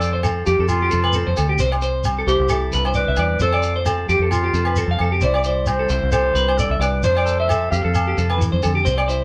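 Highlife guitar band groove at 132 BPM in 4/4 with a light swing, sunny and danceable, cut from a longer piece and moving between F and C. A mellow subtone clarinet carries the jazz-style melody with vibrato and a soft attack until 8.6 seconds. A bright, twangy guitar plays arpeggios up front, and a compressed second guitar picks accompaniment in the background, all over a warm, foam-muted fingered bass, grainy shekere and ringing, dry agogo bells, with the band heard live together in one room under moderate studio reverb.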